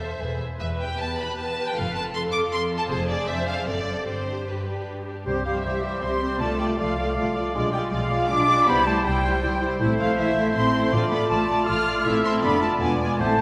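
A pure, tongued flute section rides above lush, vibrato-rich violins carrying the melody and a second line, with expressive violas, cellos and woody double basses beneath, in this dramatic, restless fast romantic symphonic movement in 3/4 at 158 BPM, played with rubato in C major and turning to A minor at 9.8 s. A warm oboe, a mellow background clarinet, a vintage-toned bassoon and very quiet sustained French horn chords join at 5.3 s, and soft calf-headed timpani enter at 10.9 s, all inside a reverberant concert-hall space.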